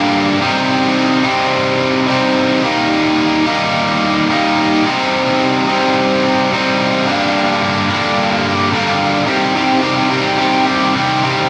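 A bright, overdriven electric guitar, picked and double-tracked up front in a wet, large studio reverb, carries this brooding, cinematic rock excerpt in C minor at 108 BPM, moving through Cm, Eb and Gm chords before a build-up from 9.3 seconds to the cut at 11.5 seconds.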